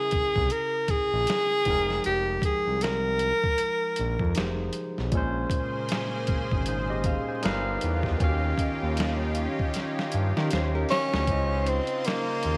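A breathy, up-front tenor saxophone with vibrato and scooped notes leads this smooth, soulful neo-soul R&B groove at 78 BPM with a swung sixteenth feel, pausing and returning at 10.9 seconds over a bright, barky, lightly overdriven tine electric piano, a smooth sawtooth synth bass, and a gritty, pitched-down boom bap sampler-style drum kit with a thumpy kick and a drum fill, while a lush, detuned unison pad with chorus swells in at 5.1 seconds and a dark, clean hollow-body jazz guitar adds a brief second line at 10.4 seconds, all set in a moderate plate reverb with vinyl crackle in this fragment of a longer piece.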